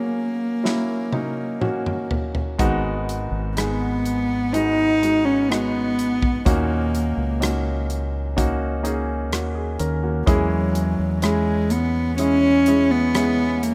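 A single bowed cello carries the melody up front, close and intimate, its soft attack and airy sul tasto tone colored by light vibrato. This melancholic, longing pop ballad excerpt moves in a straight 4/4, with a clear, polished baby grand piano providing present accompaniment from the first moment. An acoustic studio drum kit enters at 0.7 s with a fill, its punchy kick, medium-tuned snare, hi-hat, rim click and toms sitting mid-forward. At 2.6 s a fingered electric bass joins, dark and round, direct and amped, as the harmony moves from an opening F# through G#m7, D#m7 and C#m/E. Light reverb and a small room ambience lend the piece a rough home-demo character, and it is cut from a longer work.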